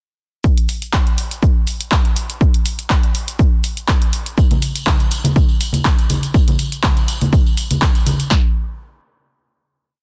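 A punchy analog drum machine drives this joyful, uplifting house piece at 122 BPM in 4/4, with a light swing on the 16ths. Its dry four-on-the-floor kick, snare and handclaps sit up front from 0.4 seconds. A second drum machine part, lower in the mix, adds programmed closed and half-open hi-hats, cabasa and backbeat claps. At 4.4 seconds tambourine and high congas join, played with soft hands and given a bright, compressed, saturated acoustic character. The short piece is a single drop that gives way to a final hit at 8.3 seconds, with little reverb and a dense, heavily limited modern master.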